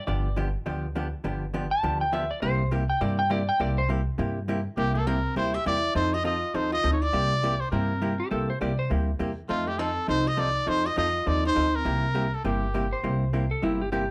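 A swung 4/4 at 203 BPM drives this cheerful western swing country passage in C mixolydian, where a warm, clean lap steel guitar takes the opening slide solo over a dark, compressed vintage hollow-body jazz guitar accompaniment and a woody, thumpy gut-string upright bass, until a soft, veiled cup-muted trumpet with vibrato carries the jazz-style melody from 4.8 seconds alongside a picked hollow-body jazz guitar second line, the whole band set in a moderate club reverb.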